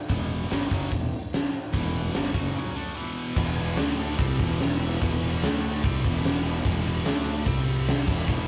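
A big rock drum kit sits up front in this menacing, heavy hard rock clip, its fat snare and punchy kick landing with a dark, smooth tone and a rolled-off top that suggests a large room. Beneath it, a fingered electric bass growls with overdriven fuzz, while a bright, high-gain guitar, picked and double-tracked, drives the riff in a straight 4/4 feel. The opening part rests on an E minor chord, and a break from 2.6 to 3.4 seconds sets up a second part in which power chords on E, D and C alternate with E minor. The drums draw on crash cymbal, hi-hat, kick and snare throughout, with all three players sounding from start to finish. Light reverb and a rough rehearsal-room quality give the sound a raw, live edge, and the passage is cut from a longer piece.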